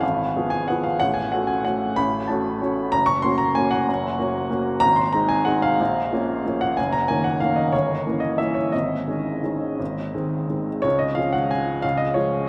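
A vast, echoing cathedral reverb with a long 7.2-second decay surrounds this short fragment of a classical piano waltz, cut from a longer piece. A lone upright piano carries the entire performance, heard up front with a woody, intimate tone, long sustain and audible action noise. Set in Db major and 3/4 time, the music moves at a lively 161-197 BPM with a free, rubato feel, and the mood is playful yet elegant. The harmony drifts through diminished and minor colours such as Fdim/Ab, F#m/A and Gdim7 before settling on Ab and resolving to Db at 10.8 seconds, where a new section begins and runs until the fragment ends at 12.5 seconds. The piano spans from the deep bass at Gb1 up to Db6, giving the polished playing a full range of colour within the cavernous space.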